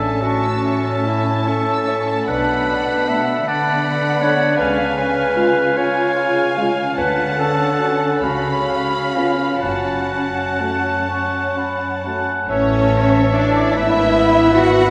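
Classical slow romantic movement for symphony orchestra in a rubato 6/8, solemn and yearning, cut from a longer piece and heard in a wet church reverb. A dark, woody violin section carries the melody with lush vibrato, while a clear clarinet, a warm cor anglais, an airy silver flute set back in the distance and a second, soft-edged violin section in the background weave second lines. A dark, roomy bassoon, a very quiet viola section and mellow French horns in the background fill the middle, and a rich, distant double bass section joins a smooth cello section on the bass, with a harmonic turn arriving at 12.5 seconds.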